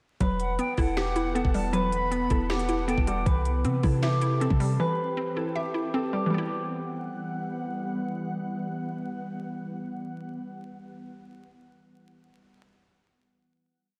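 An eerie, hard-hitting trap piece opens with a looping, thumb-plucked harp melody, a bouncy, detuned square-wave pluck arpeggio with chorus, a boomy, clean 808 with pitch slides, and a knocking half-time kit with sampler grit, sharp snare layered with snaps and crisp hi-hat rolls, while a glassy FM pad and a sparse, airy flute counter-melody with tape echo drift in just after; the drums drop out at 4.7 seconds and the bass at 4.8 seconds, leaving the harp, pad and pluck to carry a final chord from 6.3 seconds in a dreamy, reverb-soaked hall dusted with vinyl crackle.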